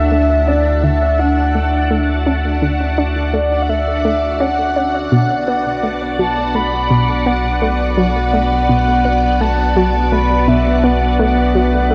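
Opening on a breathy, flute-like synth lead with vibrato over lush, vintage string-machine chords, a deep sine sub bass and a bubbling, resonant stepped-filter texture fading in far in the background, this cosmic, luminous fragment of ambient, sequencer-driven space music adds a round, nasal analog pluck riff from 0.1 s and shifts from Dadd9 to Bm at 5.1 s, soaked in a huge 8-second reverb and the warbly pitch drift of worn cassette tape.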